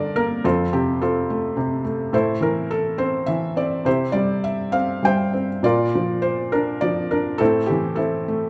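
In a rubato 3/4 at around 104 BPM, this moody, bittersweet classical fragment features a lyrical solo felt-muted upright piano ranging from F2 to G5, tuned slightly high to A4 = 441 Hz. The piano sits up front with a soft, intimate, muted tone, short sustain and audible action noise, framed by a moderate recital hall reverb. Cut from a longer piece, its 8.5 seconds move through F, Am, C and Bb before settling back on Am at 7.4 seconds.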